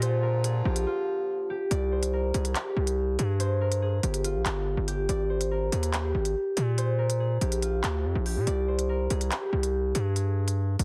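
Heavily compressed, radio-like sound in a small room frames this tense, dark drill excerpt at 142 BPM in a half-time feel, where a mellow, fingerpicked concert harp carries the ringing, low-pass-filtered melody up front over a saturated, aggressive 808-style bass with a noise layer and a drum kit of handclaps and crisp hats, while a clear classical woodwind section with light vibrato holds sustained chords only until 1.7 seconds, as a break running from 0.9 seconds ends, as the harmony cycles through Bb, C5, Gm and Absus2.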